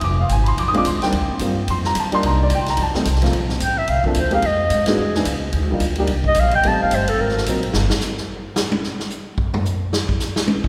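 A long, wet church reverb surrounds this short, relaxed slice of small-group swing and bop in Bb major, moving at a brisk 218 BPM in 4/4 with a swung eighth-note feel. A warm baby grand piano sits up front in accompaniment, comping through rich extended chords such as Bb9, Cm9 and Bbmaj9. A woody, dark pizzicato upright bass holds the low end. A natural, punchy drum kit plays hi-hat, ride, snare, kick and toms with a big-room openness. At 3.6 seconds a breathy, whispered clarinet takes the melody as a solo, its mellow tone carrying light vibrato, soft attacks and scooped notes for an intimate, vintage character. From 7.7 seconds the drums take a solo to close the passage at 10.7 seconds.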